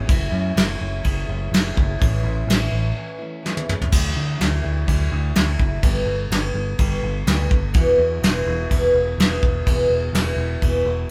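This short cut from a longer piece has the feel of a band playing live in one room, with moderate studio reverb giving a small, natural space to a hopeful, jangly stretch of folk rock and heartland rock at 125 BPM in a straight 4/4. A dark, full-bodied picked steel-string acoustic guitar carries the chords from F#m7 and A through Dadd9, Gadd9 and Esus2, while a round, amped electric bass holds the low end and a soft brush drum kit with a punchy kick sits up front. A brief break arrives at 3.0 seconds, and the drums play a fill from 3.4 to 3.9 seconds before the phrase repeats.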